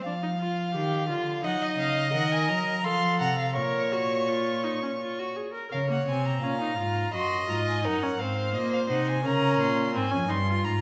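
A wet recital hall reverb surrounds this short cut from a longer baroque-style fugue for string quartet, joyful and elegant in a straight 3/4. The second violin and the rich, focused viola begin together at 0.0 s, the violin carrying a second line with vibrato and a smooth top while the viola supplies accompaniment. Beneath them the cello holds the bass, sitting close and up front with light vibrato, an airy sul tasto bow and an intimate, soft-edged attack. At 1.4 s the first violin enters with the melody above the others, its expressive line marked by vibrato, portamento and a gentle onset. The harmony moves between major and minor chords before the passage shifts into its second section at 5.7 s, and the second violin drops out at 9.9 s as the other three carry on to the cut.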